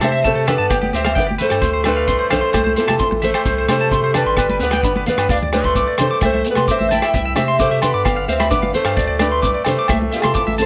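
Set in a moderate studio reverb, this danceable, carefree highlife guitar band excerpt puts an up-front fingerpicked steel-string acoustic guitar melody with plate reverb over a raspy, gritty tenor saxophone second line in the background, a small nylon-string guitar accompaniment, twangy, slightly broken-up electric guitar arpeggios with slapback echo, a deep, saturated sub bass, a vintage drum kit of hi-hat, punchy kick and rim click in a pumping small room, ringing agogo bells, high-tuned congas, and a grainy shekere that joins at 0.2 seconds.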